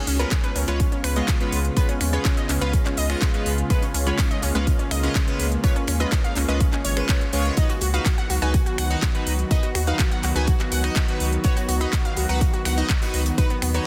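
A thick, slow-attack unison pad and bright detuned unison pluck arpeggios with dub echo open this uplifting, euphoric progressive house excerpt at 124 BPM in Db mixolydian, joined moments later by a round, deep analog bass, a house drum kit of finger snaps, handclaps and crisp hi-hats, a very quiet arena kit adding hall-toned snare and hi-hat, glossy chorused polysynth stabs also trailing dub echo, and a punchy, tape-warm electronic kick, while the pad sustains Db7 before shifting to Cb/Db at 7.6 seconds, with the pad, pluck, polysynth and bass each pumping from sidechain compression inside a dense, heavily limited master.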